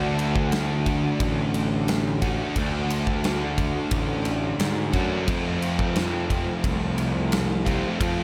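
Dreamy and hazy, this short shoegaze and dream pop cut from a longer rock piece moves at 88 BPM in a straight 4/4, with an overdriven, double-tracked electric guitar riff carrying a subtle chorus and shifting from D to F at 5.3 seconds. Beneath it, a fuzz-soaked picked electric bass adds a growly, bright overdrive, while a big acoustic rock kit enters at 0.2 seconds with a punchy kick, medium-tuned snare and bright ride. All three parts sit up front inside a moderate concert hall reverb that lends the polished, airy drums and the rest of the mix a hazy bloom.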